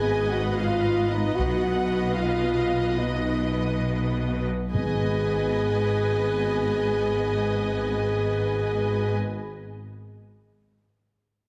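Warm, close-miked French horns hold sustained chords at the front of this dark, dramatic cinematic orchestral excerpt in G# dorian and 6/8 at 66-77 BPM. Around them, distant, clear violins carry the melody and a second line with an intense, vibrato-rich tone, and rich, lush violas, cellos and double basses fill the accompaniment and bass as the harmony moves from G#m to B and back while the tempo slows from 0.6 to 4.7 seconds. A taiko ensemble played with heavy sticks strikes close and dry from 1.4 to 2.4 seconds, and timpani played with hard mallets enter in the background at 4.7 seconds, all set in a wet scoring-stage reverb with a heavily compressed, radio-like sound.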